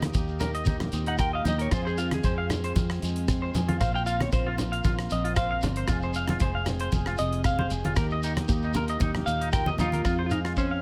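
A dark, hollow-toned semi-hollow electric guitar carries the melody from 1.1 s in this warm, danceable highlife guitar band excerpt in F minor at 115 BPM, with a lightly swung 16th feel over chords moving through Eb, Fm and Bbsus2. Two clean electric guitars join it: one warm, compressed and scooped, playing arpeggios with tape echo, and the other bright and twangy in accompaniment, while a buzzy, overdriven combo organ holds lush chorused chords in the background. A round, foam-muted fingered bass, a dry 70s drum kit with a tight kick and rim click, grainy shekere and low-tuned, damped congas drive the groove in a close, nearly reverb-free sound.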